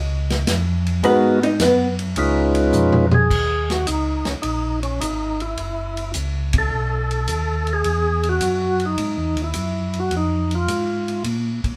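A small, wet room sound frames this bluesy, soulful soul jazz organ trio excerpt at 106 BPM with a swung 4/4 feel in Eb minor, where a dark, clean hollow-body jazz guitar solos briefly until 1.9 s, a round, mellow tonewheel organ with chorus vibrato and slow rotary carries the bass, a distant, roomy drum kit with dark cymbals and a tight kick adds a fill before 3.3 s, and a percussive organ with key click plays the melody up front from 1.0 s, with a band accent at 6.4 s.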